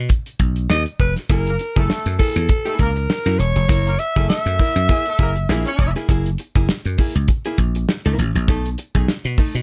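Gritty and strutting, this funk piece moves at 100 BPM in F# mixolydian with a light 16th-note swing, opening on a break where a dry, thumbed slap bass with a foam-muted growl and a damped 70s drum kit with a fat snare and tight kick sit up front. A raspy, breathy alto saxophone with vintage vibrato carries the melody from 0.7 s to 5.7 s, backed by a punchy, clear horn section, while a clean, compressed hollow-body jazz guitar picks out accompaniment from 1.3 s. The harmony moves from B to F#9 and on to B13 in a close, nearly reverb-free sound.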